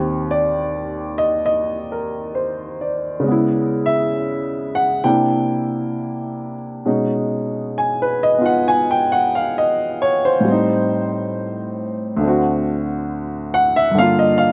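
The sound is dry and intimate, captured outdoors with only a trace of reverb, so the grand piano sits up front with a smooth, vintage tone. This is a short cut from a longer solo jazz performance at a slow 67 BPM in 4/4, played with a swung eighth-note feel and a rubato freedom that lets the time breathe. The single grand piano carries everything across its 14.5 seconds, ranging from a deep D2 up to G#5. The harmony drifts through rich, colourful changes, opening on Eb6 before moving through Dbm7, C9 and B69, then settling into a minor ii-V of Am7b5 and D7 that lands on Gm7 at 14.0 seconds. The mood is warm and sophisticated, like a late-evening reverie at the keyboard.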